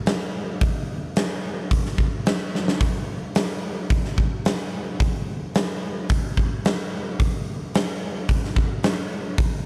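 Driving and raunchy, this short rock passage is cut from a longer piece and moves at 109 BPM in a straight 4/4. A huge acoustic arena drum kit carries the whole passage, playing from 0.1 to 9.5 seconds with hi-hat, kick drum and snare drum. The snare sounds fat and the kick punchy, with the kit sitting up front and breathing with a pumping, hall-like room. A drum fill arrives at 2.5 seconds. Light reverb rounds out the sound of this brief, single-section clip.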